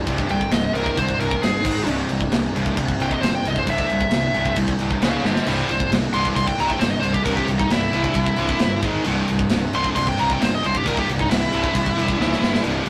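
A warm, high-gain lead guitar solo sits up front across this epic, dark heavy metal excerpt in a straight 4/4, with a double-tracked fuzz guitar and a tight distorted rhythm guitar grinding out bright picked riffs in the background, a growly, overdriven fuzz bass underneath, and an acoustic drum kit with a tight kick, medium-tuned snare, rolled-off cymbals and fills at 5.2 and 12.2 seconds, while a heavy high-gain guitar joins the riff at 5.5 seconds, all captured in a rough rehearsal-room recording with tube saturation and light reverb.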